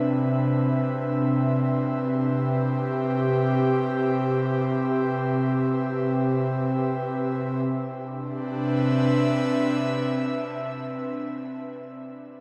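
Serene and weightless, this ambient excerpt in free time drifts in C major, tuned to A4 = 439 Hz, as a single airy, breathy pad with a detuned sawtooth-and-triangle tone, a noise layer and chorus sits up front holding soft sustained chords, opening on Cmaj7, from C3 to E5 for 11.5 seconds, its slow attack and long release bathed in a huge, wet reverb with a 7.9-second tail.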